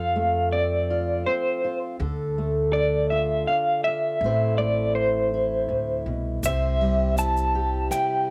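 A slightly broken-up electric guitar carries the melody through tremolo and cassette-tape coloring, over a fingerpicked steel-string acoustic guitar with bright, fresh strings and a woody, growly pizzicato upright bass, all up front in this gentle, hopeful acoustic folk excerpt at 81 BPM in 3/4. The harmony moves from F to Dm to Am, and at 6.4 s, as it reaches C, a dark brushed drum kit enters in the background alongside a grainy tube shaker. The whole piece is a home recording on cassette, with a light reverb.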